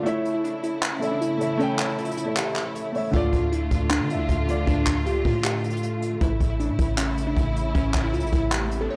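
Glassy digital keys with chorus and tape echo carry an eerie, melancholic melody through this half-time trap and hip hop excerpt at 156 BPM, over a dark, mellow baby grand piano with audible action noise that drops out at 6.2 seconds and lush, bowed symphonic strings with vibrato holding sustained chords on A and D minor. A jazz brush drum kit with handclaps, hi-hat and a boomy kick sits up front yet sounds roomy and distant, while a deep, sine-based 808-style bass enters at 3.1 seconds after the opening break. A soft electronic riser closes the final half second in a dry mix.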